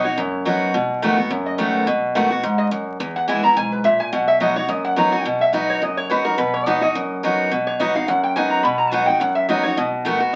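A bright, metallic lap resonator guitar, a picked steel-string acoustic guitar and an upright bass all start together in this short cut from a longer bluegrass piece, which is lively and virtuosic at a brisk 213 BPM in 4/4 with a light swing on the eighth notes. The resonator guitar carries the melody and plays a steel-bar solo throughout, its nasal, fingerpicked slide tone ringing high in the register. Up front, the full-bodied dreadnought acoustic guitar supplies picked accompaniment that spans from low bass notes into the middle range. Far back in the mix, the upright bass adds a woody, growly pizzicato pulse on steel strings. The harmony in B major moves from B through B7 to E and back to B, closing on B7 near 9.8 seconds, and the same passage is heard twice. A moderate club reverb and the crackle of a very old 78 rpm record give the whole recording an aged, intimate feel.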